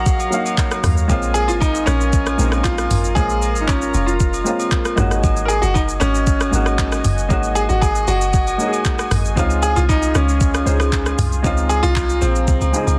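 Amapiano at 116 BPM, hypnotic and soulful, where a clear, open grand piano carries the melody through digital delay over an intimate baby grand with audible action noise, a warbling, detuned analog pad with chorus in the background, a deep, round log drum bass with a fast, percussive attack, a smooth electronic R&B kit of soft kick, handclaps, rim click, shaker, toms and hi-hat, and background agogo bells and woodblock, all moving through Ebm7, Bbm7, Ab7sus4 and Dbmaj7 in a dense, heavily limited mix with little reverb before a grand piano fill at 12.7 seconds.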